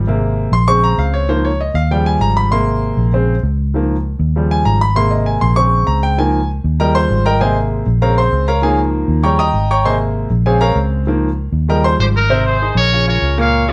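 Festive and sunny, this brisk Latin excerpt at 196 BPM in Ab major features a clear, intimate concert grand piano with audible action noise and long sustain playing solo over a round, foam-muted vintage electric bass through a looping Abadd9–Bbm7–Db6–Eb7 progression, until a punchy, tight trumpet section with vibrato enters at 12.0 seconds to carry the melody, all within light reverb.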